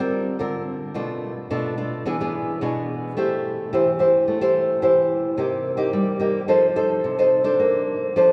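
A fingerpicked nylon-string guitar opens the recording and plays alone for its full 8.3 seconds, carrying a festive, sunny samba in a straight 4/4 feel. The acoustic tone is warm and classical, and the guitar sits up front, ranging from B2 up to C5. Its harmony moves through a string of jazzy seventh chords, from Gm7 through E7 and Am7 to F7, before settling on a lush Bbmaj9. A wet cathedral reverb with a long 5.6-second decay surrounds the instrument, giving it the spacious sound of a church or concert hall. The passage is cut from a longer piece.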